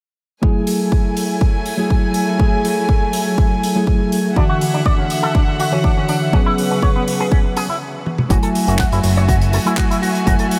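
Groovy and cosmic, this short nu-disco excerpt drifts through a dreamy mix soaked in a huge ambient reverb. A worn, slightly out-of-tune tine electric piano, lightly overdriven and pumping against the kick, carries the accompaniment from 0.4 seconds alongside a dark chamber string section holding soft-attack bowed chords with light vibrato over F#m9, Dmaj9 and C#7sus4. A punchy, tape-colored electronic kick sits up front, joined by an airy acoustic kit played with bundle sticks on handclaps, hi-hat and toms. At 4.4 seconds an electric guitar enters with a fingered, envelope-filtered riff, its clean tone dressed in lush chorus, 12-bit sampler grit and delay. After a brief stop broken by a drum fill, a fat, saturated analog bass arrives at 8.3 seconds, thick and detuned with a filter sweep, anchoring the return to F#m9.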